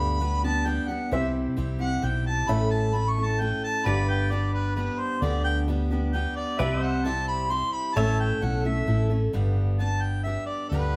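Honky-tonk and classic country in a down-home, nostalgic mood, moving at 132 BPM in a straight 3/4 waltz time in G major, cut from a longer piece. A warm, roomy harmonica with light vibrato carries the solo line up front from the start, played in a classical style. Beneath it, a bright, full-bodied picked dreadnought acoustic guitar with fresh strings picks out the accompaniment, while a dark, round, punchy hollow-body electric bass sits up front. A clear, woody upright piano adds background accompaniment until 9.3 seconds, and a twangy, compressed pedal steel played with fingerpicks enters at 3.9 seconds with sliding sustained chords and volume swells before dropping out at 9.3 seconds. The chords cycle through G, C and A, and the whole sound is bathed in a wet studio reverb heard from further back in the room.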